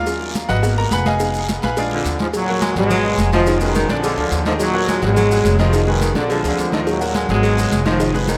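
Passionate, danceable salsa in Eb minor at 212 BPM, this excerpt opens with a brilliant grand piano solo over woody pizzicato upright bass, soft-handed congas, a round low cowbell, raspy guiro and grainy maracas, before a tight, up-front trombone section takes the melody at 1.9 seconds and a punchy baritone saxophone adds a second line at 2.6 seconds, all washed in the huge reverb of a vast, echoing space over a cycling Ebm7–Abm7–Fm7b5–Bb7 progression.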